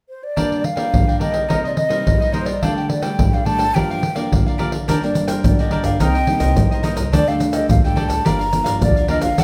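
This is a samba and choro piece in G minor at 106 BPM in a straight 4/4, with a yearning, bittersweet mood, cut from a longer performance. A breathy concert flute carries the melody from 0.1 seconds, tongued and expressive with vibrato and lifted highs, moving between Bb4 and Bb5. From 0.4 seconds a crisp, picked cavaquinho and a fingerpicked classical nylon-string guitar accompany it. Also from 0.4 seconds, a close percussion group of deep surdo, pandeiro and tube shaker sits up front. At 4.9 seconds a woody, thumpy pizzicato upright bass with steel strings joins in the background as the Gm, Cm7, Dsus4, Gm7 progression comes round again. The band plays live in one room, and a moderate large studio reverb surrounds the sound.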